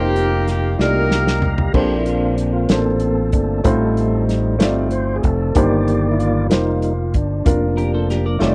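A clear tonewheel organ through a slow rotary speaker takes the solo from 1.7 s in this jubilant, soulful slow gospel excerpt in 6/8, after a present horn section with light vibrato carries the opening melody over a drum fill, all backed by a short-sustain baby grand piano, a growly, punchy fingered electric bass and a dry, up-front soul kit with dark cymbals and a tight kick, while a clean, compressed electric guitar with analog chorus adds a picked second line from 7.8 s.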